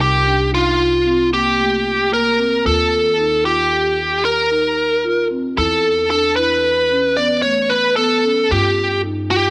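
Intricate and driving, this short fragment of progressive instrumental music runs at 226 BPM in eighths through an 11/8 metre, with a bright, biting overdriven lead guitar carrying the melody up front while a mellow, round marimba played with soft mallets spins arpeggios and a woody pizzicato upright bass anchors the low end, all moving through Cm7, Ebadd9 and E5 before the chords drop away at 8.5 seconds, set in a moderate plate reverb.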